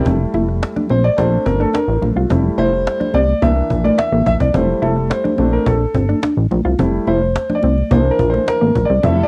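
A home cassette recording with light reverb carries this smooth, feel-good early-eighties boogie funk excerpt at 107 BPM in F major, where a boxy, up-front concert grand piano with deep bass takes a solo over Fmaj7, Bbmaj7 and C9 changes, backed by a dark, clean, fingered electric guitar riff with subtle chorus, a glossy retro synth bass with a filter pluck, a woody, dry cajon, ringing high-tuned congas in the background, and a lush, very quiet bowed string section that sounds only at 0.0 and again from 9.0 s.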